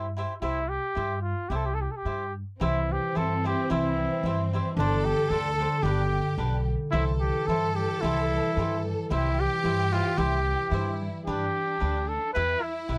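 Mexican folk mariachi in C major at 111 BPM in a swung, rubato 2/4, proud and festive: a vintage, up-front trumpet carries the melody over crisp picked cavaquinho and a woody, up-front pizzicato upright bass, joined at 2.6 seconds by a lush, bowed violin section with vibrato on a second line and a mellow, ringing fingerpicked concert harp whose arpeggios stop at 11.3 seconds, all in a dry, close 1970s-style studio sound with light reverb in this short cut from a longer piece.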